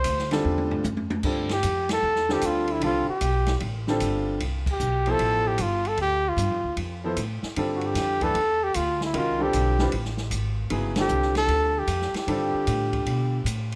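A breathy, close-miked trumpet with vibrato, a soft attack and scooped notes leads this open, hypnotic modal jazz passage in G mixolydian at 152 BPM with a swung feel, taking a solo for the first 1.2 seconds as a drum fill enters at 0.5 seconds, while woody pizzicato upright bass sits up front, a clear grand piano comes in at 0.3 seconds, and an acoustic jazz kit with dark cymbals and a boomy kick plays throughout as the band lands accents together, the trumpet bathed in plate reverb within a moderate large studio ambience in this passage cut from a longer piece.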